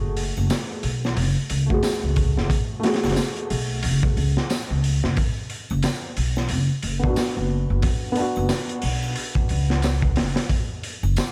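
A dark, cinematic trip hop fragment opens on a soft, felt-muted upright piano, its thick felt and audible action noise shaded by tremolo and tape echo, alongside an up-front, woody pizzicato upright bass with tube saturation. A crunchy breakbeat kit of tight kick, medium-tuned snare and hi-hat arrives at 0.2 s, gritty and saturated with a rolled-off top, while triangle and tambourine sit in the background. Swung sixteenths give a lazy lilt, vinyl crackle and a small room reverb frame the mix, and the harmony shifts at 5.2 s before the piano stops at 10.5 s.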